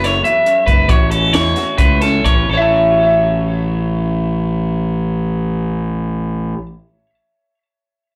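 Straight eighths in 7/8 at 247-287 BPM, slowing over the first 2.5 seconds, drive this intricate, playful math rock and midwest emo fragment in A major (tuned to A4 = 444 Hz): a bright, twangy, compressed guitar picks lo-fi arpeggios up front with tape and slapback echo over a warm, slightly broken-up guitar accompaniment in the background, a growly fuzz bass fingered with overdrive sits up front in the low end, and a dry cocktail kit with a high-tuned snare and punchy kick plays only until 2.4 seconds, all captured live through the venue's PA with club reverb as the chords move from F#9sus4 to A69 and A6.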